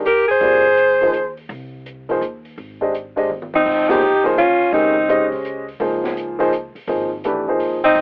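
Modal jazz in a swung 3/4, hypnotic and searching, this short cut-out from a longer piece is carried by a woody, up-front upright piano, a dark, thumpy pizzicato upright bass on gut strings, and an acoustic drum kit with dark cymbals, a high-tuned snare and a boomy kick, captured in a small room with a cassette-tape tinge. A clear alto saxophone leads with vibrato, subtone and scooped notes, up front and coloured by cassette tape, while a close-miked tenor saxophone with its own vibrato and scoops shadows it as a second line in short phrases. The dry, lo-fi home-cassette sound has a telephone-like narrowness, and a drum fill at 3.3 seconds sets up a band accent at 3.8 seconds as the harmony settles onto a Dbmaj9 chord.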